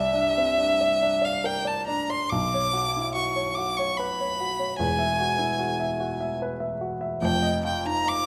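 Classical impressionist duo for violin and baby grand piano, hazy and mysterious in mood, moving in a rubato 3/4 at roughly 67-76 BPM. A single bowed violin carries the melody in a high register from E5 to D6, its tone clear, smooth and even with vibrato, sitting close and up front. The baby grand piano supplies a warm accompaniment spanning a deep range from E1 to E5, also placed up front, and both parts play throughout the 8.3-second excerpt. Colorful extended harmonies drift from C9 to Bmadd9, then Eadd9, settling on F9sus4 at 7.2 seconds. A wet recital hall reverb with a 1.5-second decay surrounds the duo, adding to the dreamlike atmosphere of this fragment cut from a longer piece.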